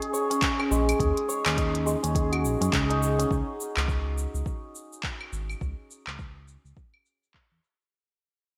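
A shimmering, ringing santur leads this meditative organic downtempo cut from a longer piece, its hammered arpeggios sitting up front and trailed by a digital delay until about 7.0 seconds. Beneath it, a dark, smooth synth bass, built from sawtooth and square waves with a touch of ring modulation, holds sustained notes with a fast attack close to the listener. The hypnotic groove moves at 104 BPM in 4/4 with a swung sixteenth feel: a soft electronic kick enters at 0.4 seconds to join an organic electronic kit of claves, handclaps, shaker and crisp hi-hats, filtered and gated, both tape-saturated and re-recorded in a small room. The harmony rests on D#m7 before shifting to a C#5 chord at 3.3 seconds, where a fade-out begins and runs to the end. A lush hall reverb and bright 1980s-style digital production give the whole piece a glossy, spacious sheen.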